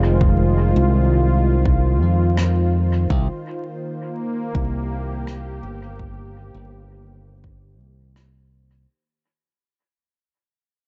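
A detuned sawtooth analog pad with a slow attack and chorus warbles over Fm7 and then Cm7 from 3.1 s, while a bright, up-front fingered electric bass holds the low end in this meditative, deep ambient dub fragment at 83 BPM in C minor. A deep, tape-warm electronic kick enters at 0.2 s, and a dark, rolled-off rim click with dub echo joins at 2.4 s. Vinyl crackle and light reverb sit under a sound that tops out at 7.9 kHz as the passage fades throughout.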